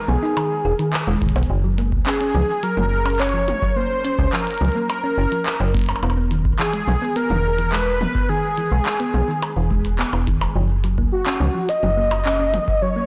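A velvety, detuned synth lead with vibrato and tape echo opens this intricate, glitchy IDM passage and carries the melody over a round, tine-like thumb-piano pluck spinning arpeggios through digital delay (both chorused), a metallic, up-front FM bass, and a clicky glitch kit of handclaps, hi-hats, toms and percussion blips, joined at 1.2 seconds by a deep analog kick, all set in light digital ambience with a blown-out, overdriven sheen as the harmony moves between Emaj7 and Gb.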